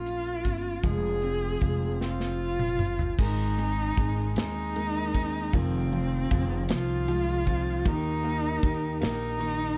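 A bowed, woody cello carries the melody from the opening moment of this fragment of a tender, swaying pop ballad in six-eight, joined at once by a clear concert grand piano, a fingerpicked steel-string acoustic guitar and an upright bass, with a modern studio drum kit arriving almost immediately. The cello is a single player with vibrato, dark in tone and sounding distant yet placed up front. The piano is intimate and present, with deep bass, long sustain and audible action noise, while the dreadnought guitar sits in the background with a full-bodied sound. The pizzicato bass is thumpy and bright on steel strings. The drums, captured in a small, airy room, bring a punchy kick and a medium-tuned snare, with a fill from 2.0 to 3.2 seconds leading into the second section. The harmony moves from Bbm and Fm to Abadd9, Fm7 and Eb within a shadowy, warm production.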